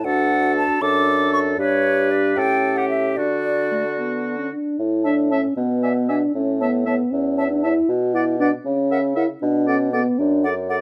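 A cheerful, lively classical-period movement for wind quintet opens with all five players together in a quick 6/8 at 78 dotted-quarter beats per minute in D major, where an airy concert flute with a straight tone and soft attack carries the expressive melody above a clear oboe second line touched with light vibrato. A dark French horn and a smooth-topped clarinet fill in the accompaniment while a mellow, distant bassoon anchors the bass, all heard through close, detailed microphones with light reverb. At 4.8 s the music moves to A major and later turns to B minor harmonies before this cut from a longer piece ends at 10.8 s.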